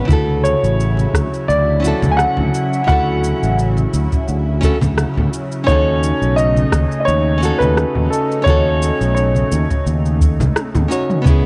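A lightly swung sixteenth-note groove of deep analog kick, an overdriven deep house kit with cabasa, rim click and toms, and very quiet hard-hand congas carries this wistful sunset chillout fragment, as up-front fingered electric bass sits beneath fingerpicked nylon-string guitar and a thick detuned pad with chorus and phaser moving from Dmaj9 to B9, while an intimate grand piano melody with audible action noise and tape echo plays from 0.4 to 9.8 seconds before a drum fill at 10.6 seconds, the mix wrapped in light reverb and a worn, warbling cassette character.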